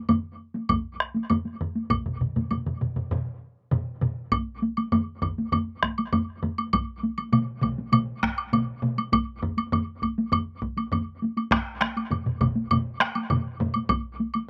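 Hard-stick taiko ensembles sit up front in this driving, ceremonial Japanese traditional drum piece at 100 BPM in a straight 4/4, joined by two solo taiko drum parts, one close and dry, and a woody woodblock carrying a slapback echo, all captured in a short booth-like ambience in a fragment cut from a longer performance, with a second ensemble entering at 1.9 seconds as the music moves into a new section at 4.3 seconds.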